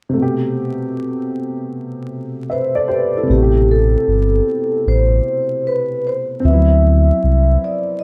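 Nostalgic and reflective, this lo-fi hip hop excerpt in A minor moves at 76 BPM with a swung 16th-note feel, opening on a dark, woody, slightly detuned upright piano of worn vintage character; a metallic, ringing vibraphone melody with soft mallets and slow motor vibrato enters at 2.5 seconds in a boxy small room, and a deep, full sine sub bass arrives at 3.3 seconds, with the harmony shifting from Am9 to D13 at 6.4 seconds amid vinyl crackle, moderate studio reverb and a dusky, warm production.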